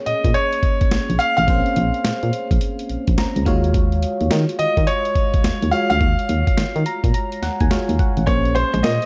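This excerpt of punchy, confident new jack swing R&B opens on a glassy FM electric piano with a bell-like attack and chorus, laying down the Bbm9 and Ebm11 chords in a dark, lightly reverberant production. Almost at once a bright concert grand piano carries the melody up front, its brilliant, polished tone treated with delay and given long sustain. Beneath it, a solid FM bass sounds round and mellow with a fast attack, while a gritty, compressed boom bap sampler-style drum kit sits forward with a thumpy kick, medium-tuned snare and hi-hat, all riding a swung sixteenth-note groove. The electric piano adds fills from 2.9 to 3.7 seconds and again from 6.6 to 8.3 seconds. At 8.3 seconds, as the harmony returns to Bbm9, a clean, direct-recorded electric guitar slips in behind the mix with a short picked riff softened by subtle chorus.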